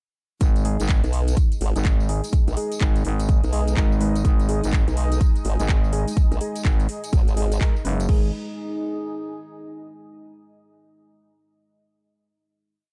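Bass house at 125 BPM with a swung sixteenth feel, gritty and swaggering, built on a dark, tape-warm production that drops in at 0.4 seconds with a punchy four-on-the-floor kick, metallic hats, clap, tambourine and crash, while a thick, growling FM bass in chopped phrases sits up front beside a compressed, formant-filtered wobble bass whose modulated phrases change their wobble speed and answer it. Hollow, organ-like stabs with chorus and tape echo play syncopated chords in the background, and two deep, moody pads with built-in reverb and sidechain pumping add sustained, slowly shifting chords, one mellow and one darker. The wobble bass drops out at 7.6 seconds, and the drums and growling bass stop around 8.2 seconds, leaving the ambient pad to ring out a final chord until 10.0 seconds.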